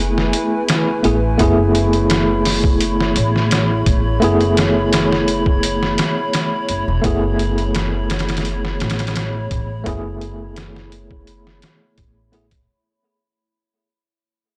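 Up front, a muffled, pitched-down sampler-style drum kit with a thumpy kick, medium-tuned snare and hi-hat drives this slow 85 BPM trip hop excerpt in F# minor, entering at 0.2 s over a held F#m11 chord. A worn, slightly out-of-tune tine electric piano with tremolo, tape echo and 12-bit grit plays the accompaniment, while a woody, growly pizzicato upright bass holds the low end and a warbling, detuned tape-like pad with chorus and reverb sustains mellow chords. The smoky, cinematic recording sounds blown-out and overdriven in a digital ambience, and it fades out from 5.2 s to its end at 12.7 s.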